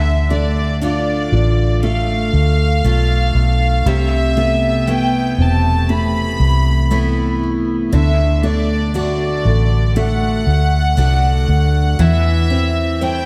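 Soaked in a lush, dreamy hall reverb, this heartbroken, longing pop ballad excerpt drifts at 59 BPM in 4/4 as a clear, distant violin section carries the melody with light vibrato over a soft, felt-muted upright piano whose action noise lends intimacy, bright picked arpeggios from a full-bodied jumbo steel-string acoustic guitar, and a round, punchy, foam-muted electric bass sitting up front, moving from Dm through Amadd9 and D to Am/E.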